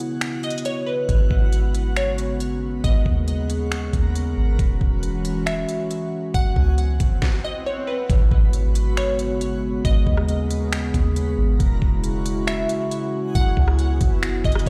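A half-time 4/4 groove at 137 BPM anchors this ethereal, hazy cloud-rap fragment in G# minor. A smooth, up-front R&B drum kit of knocking kick, deep snare, hi-hat, rim click and finger snaps enters at 0.2 seconds, and a soft, round 808-style bass follows at 1.1 seconds. Over them, a detuned, chorused analog pad sustains moody chords moving through G#m11, E69 and F#7sus4, while a crystalline wavetable pluck with chorus and delay carries the melody and a reversed, granular backwards texture swells dreamily. An electronic swell-and-impact effect marks the drop at 8.1 seconds after a brief stop, and the whole mix sounds dry yet carries the stony echo of a big system playing in a bare room.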